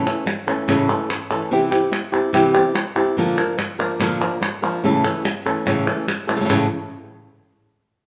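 In a straight 4/4, this dramatic, intense flamenco passage from a longer piece sets fingerpicked acoustic guitar up front, carrying the melody over a chord movement from A through C and Bb back to A, with audible finger squeak. Crisp, compressed, saturated palmas hand claps sit lower in the mix from 0.1 s to 6.6 s, while the guitar plays until 6.7 s. The players share one room, bathed in a wet, large studio reverb with a softened top end.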